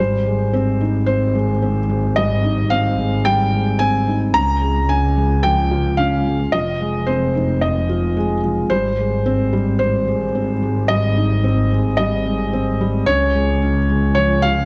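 The recording has a dark, warm studio sound with light reverb and studio ambience. This hopeful, tender piece of piano and strings electronica moves at 110 BPM in a straight 4/4 in Ab major, and it is cut from a longer work. Two felt-muted upright pianos sit up front through the whole 14.7 seconds, both carrying tape echo. One plays the melody between C5 and Bb5 with a thick-felt, mellow tone and audible action noise. The other plays a riff between F3 and F4 with a thinner felt and an intimate, softly muted character. Beneath them, a rich bowed double bass section holds the bass line from F1 to Db2 with a focused tone and vibrato, while the harmony moves from Abmaj7 through Db and Fm7 before returning to Abmaj7 and Db.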